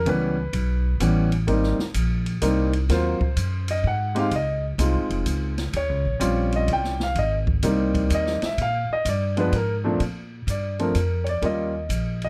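This jazz piano trio swings in a relaxed 3/4 at 127 BPM, in a short cut from a longer piece. A warm concert grand piano carries the melody with deep bass and an up-front presence, over rich chords such as A9, Abmaj9, Dbmaj9 and a rootless Eb13. Pizzicato upright bass sits close beside it, woody and growly with the bite of steel strings, anchoring the harmony from the low register. An open jazz drum kit enters at 0.1 seconds, set back in the mix with dark ride cymbals, hi-hat, a medium-tuned snare and a boomy kick that sound natural in a studio room. The recording is intimate and detailed with little reverb, and at 10.0 seconds the harmony moves to a new section built on Bb and Eb9 before the cut ends at 12.3 seconds.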